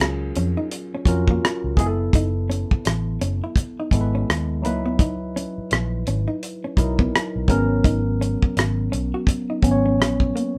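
Introspective and sultry, this neo-soul R&B excerpt moves at 84 BPM in 4/4 with a 16th-note swing, drifting from a rootless Ebm11 through Gbm11 and Abm11 chords. A dry, dark 70s drum kit with a tight kick, hi-hat and rim click sits up front beside a round, foam-muted fingered electric bass and a worn, slightly out-of-tune tine electric piano colored by phaser. A clean, compressed hollow-body jazz guitar plays a quieter second line, all heard as a band playing live in one room with light reverb.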